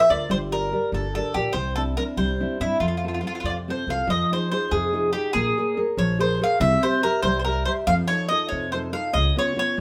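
A picked mandolin and a fingerpicked nylon-string guitar open this lively, sunny Italian folk serenade together, with a pizzicato upright bass joining at 0.1 s. The tune moves in a straight 6/8 at 95 BPM, counted in dotted quarters. The mandolin carries the melody up front, its double strings giving a round, warm tone. The guitar supplies a warm, deep classical accompaniment, and the gut-string bass adds a woody, dark, thumpy foundation. The piece begins in F major, moving through Gm, Cadd9 and F, then shifts to F minor at 4.1 s, where Fm7, Bbm7, C, F7 and Db7 follow before this excerpt of a longer piece breaks off. The trio plays live in one room, wrapped in a moderate studio reverb.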